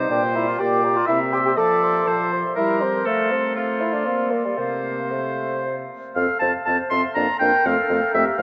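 A vast, echoing cathedral reverb bathes this excerpt in a long, wet tail, with the highs trimmed above 7.8 kHz. It is a quick, spirited classical-period movement for wind quintet in F major and 3/4 at 121 BPM, played with a lively rubato feel and tuned to A4 = 442 Hz. An oboe with a warm tone sits up front on a second line, while the mellow, hollow silver flute carries the melody from further back, its pure sound marked by vibrato and a crisp attack. Beneath them a dark clarinet and a smooth-topped French horn fill out the accompaniment, and a roomy bassoon with a soft attack and light vibrato supplies the bass. All five instruments play from start to finish; the harmony arrives on C at 5.6 s before a new passage begins at 6.2 s and moves between F and B flat.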